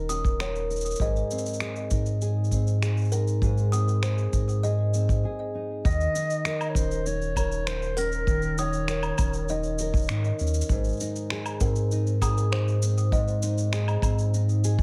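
A mellow, close-miked clarinet with vibrato and scooped notes plays a brief jazz-style solo from 5.9 to 9.8 seconds in this autumnal, intimate folktronica excerpt, set over full-bodied, thumb-plucked nylon-string guitar arpeggios with delay, a deep, round sine sub bass, a woody, ringing kalimba second line bathed in plate reverb and digital delay, a dark, punchy brushed kick drum, and an electronic shaker, finger snaps and woodblock re-recorded in a large room, with a short break at 5.2 seconds.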